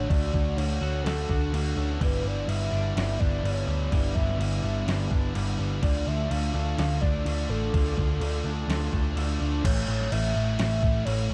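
A straight 4/4 pulse comes from a clean, sampler-style 12-bit drum machine with a thumpy kick, medium-tuned snare and crash, set up front beside a round, foam-muted vintage bass, until the kick and snare drop out at 9.4 seconds in this dreamy, wistful shoegaze and dream pop fragment. Behind them, a thick fuzz guitar with ensemble chorus and a biting, double-tracked overdriven guitar play riffs, while a slightly broken-up guitar through a small old amp adds a lo-fi riff with reverse reverb and a twangy, scooped clean guitar picks arpeggios through chorus and analog delay, both stopping at 9.6 seconds. Over Dmaj7, G6 and Dm chords moving to A, a pure, breathy sine lead glides a mellow, vibrato-tinged melody through chorus and delay, all wrapped in dark digital ambience.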